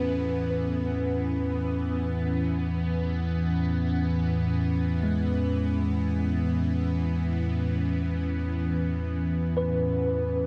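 Ambient music in free time, this short excerpt from a longer piece feels peaceful and luminous, resting on a single A chord over E that holds for its full 10.5 seconds. A warbling, nostalgic tape-like pad carries the sustained chords, its detuned square and triangle tones easing in slowly and fading on a long release through chorus and built-in reverb. Above it, a worn, slightly out-of-tune tine electric piano plays clean, direct arpeggios, colored by ensemble chorus and delay. A round analog bass holds a deep E2 beneath, while a string-like bowed drone adds a tense, detuned sawtooth layer with a breath of noise, vibrato, and phaser. The production is dark and warm, bathed in a huge, wet ambient reverb that lets every held sound hang in the air.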